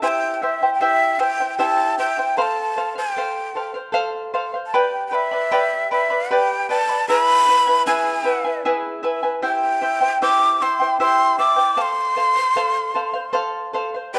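Melancholic yet festive, this Andean folk passage moves at 77 BPM in a straight 3/4. A large wooden quena carries the melody from start to finish, its end-blown tone breathy and bright, with tongued notes, vibrato and an unsteady delivery as it ranges between E5 and D6. Beside it, a fingerpicked acoustic charango supplies the accompaniment across the full 14.2 seconds, its double strings, some doubled at the octave, giving a shimmering sparkle. Both instruments sit up front, while a moderate recital-hall reverb lends the pair an airy sense of space. The harmony moves through C, F, G and E before returning to C and F, in a single section cut from a longer piece.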